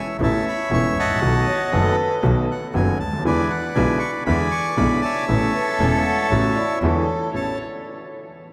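The reedy bandoneon leads this elegant, passionate tango excerpt, carrying the melody up front with a close, dry and full tone from the very start. A baby grand piano, natural and up front, supplies the accompaniment alongside a bright, biting double bass, bowed by one player with vibrato and a smooth top, both entering at 0.2 seconds. The tempo sits at 118 BPM in 4/4 with a rubato feel, moving through A major over chords such as Aadd9, B7 and E7. A mellow, hollow silver concert flute with vibrato and tongued notes joins a soft-attack cello, played sul tasto, as second lines in the background, briefly from 1.5 seconds and again from 5.5 seconds. The cello's tone is pure and floating, sitting distant behind the lead. The whole ensemble sounds as if in a vast, echoing cathedral space with a long, wet reverb.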